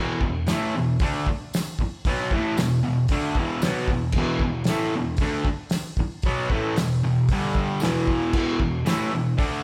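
Swaggering and raw, this short garage rock clip is cut from a longer piece and carries a straight, steady feel, as if the group were playing live together in one room with a light touch of reverb. A bright, double-tracked fuzz guitar drives the riff from the very start, its distorted, compressed tone pushed up front and ranging from E2 to D4 while the harmony sits on E5 before a brief move to G5 at 7.3 seconds and back to E5. The drum kit enters at 0.2 seconds with a cloth-damped, thuddy sound: a fat snare, a tight kick, dark cymbals across hi-hat and crash, and a rolled-off top, all up front with the small-room character of an acoustic kit. A jingly tambourine sits dry and close in the background, heard faintly beneath the guitar and drums. The result is compact and gritty, with the guitar's fuzz and the muffled punch of the kit defining the sound.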